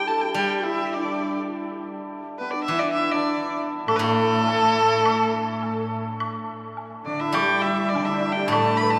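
Bathed in a cathedral-like reverb with a long tail, this graceful, pastoral excerpt of Chinese traditional chamber music unfolds at 103 BPM in a rubato 2/4 in the D zhi mode, with a clear, up-front erhu singing the melody with vibrato and portamento over a breathy, hollow bamboo xiao, a shimmering hammered dulcimer and a silvery steel-string zither played with fingerpicks, before a warm sul tasto cello and a close, dry woodblock join in the background at 3.9 s.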